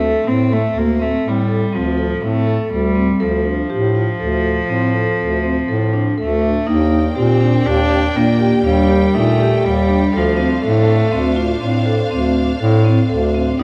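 Set in a wet concert-hall reverb, this restless, hypnotic excerpt of contemporary chamber music moves in an uneven 7/4 over Dm7 and Ebmaj7 harmonies. A rich, reedy cello carries the melody with light vibrato and a gut-string tone, up front beside a mellow bass clarinet holding the bass line, while a soft-mallet vibraphone rings out metallic arpeggios with a fast motor vibrato. At 6.7 s a lush studio string section joins with smooth, sustained chords.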